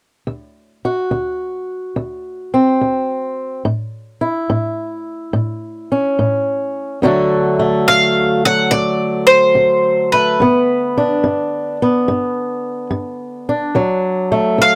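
The rhythm swings at a relaxed 71 BPM in 4/4, with a lilting swing on the eighth notes, giving this short excerpt of acoustic country blues in D major a rollicking yet soulful feel. A fingerpicked acoustic guitar opens at 0.3 seconds and carries the accompaniment throughout, its dark, boxy tone sitting up front with audible finger squeak as it moves from D7 to A. At 7.9 seconds a bowl-back mandolin enters with the melody, its bright, picked double strings ringing clearly up front above the guitar. Underneath, the harmony shifts through D and G before returning to D near the close. Light reverb and close, detailed miking keep the duo intimate and present until the cut at 14.8 seconds.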